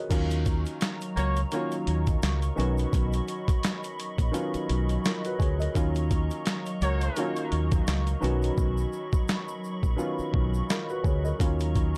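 A dark grand piano with worn, intimate tone and audible action noise opens this dark, tough boom-bap hip-hop excerpt in Eb minor at 85 BPM, joined almost at once by a gritty, pitched-down sampler-style drum kit with a thumpy kick and a round, up-front dub electric bass, while a grainy egg shaker sits in the background. A hollow, flute-like pad with detuned chorus sustains chords beneath, as a tight jazz horn section with tape echo fires brief stabs at 1.2 and 6.8 seconds. The hi-hats drop out from 8.6 to 11.4 seconds over a swung groove that alternates Ebm7 and Badd9, all inside a dark, lightly reverberant mix.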